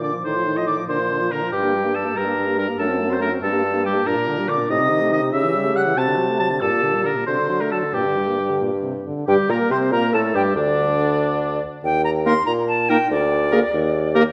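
A clear, up-front oboe carries the second line beneath a pure, distant, vibrato-touched silver flute melody in this stormy, urgent excerpt from a quick classical-period wind quintet movement in 6/8, while a mellow clarinet sits softly in the background, a French horn supplies the accompaniment, and a soft-attacked bassoon anchors the bass up front, all set in a moderate scoring-stage reverb.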